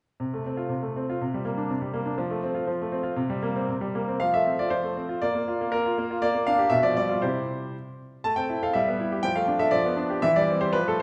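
Cheerful and playful, this brief excerpt from a longer classical-period piano sonatina moves at 120 BPM in 2/4 with a rubato feel, set in F major. A solo grand piano carries everything from 0.2 to 11.0 seconds, its bright, brilliant tone sounding natural and up front, with short sustain across a range from B2 to A5. The harmony opens on F over C and passes through Csus2 and F before resting on a bare C fifth, then a second section from 4.2 seconds wanders further afield through Bb, G minor, G7 and A minor. A chain of chords in quick succession, from E minor through D minor and G7, settles on C over E at 10.2 seconds, where the excerpt breaks off. The room is a recital hall with a generous, wet reverb of about 1.5 seconds, heard from further back, and the top end is gently rolled off, giving the sparkle of the playing a soft, distant halo.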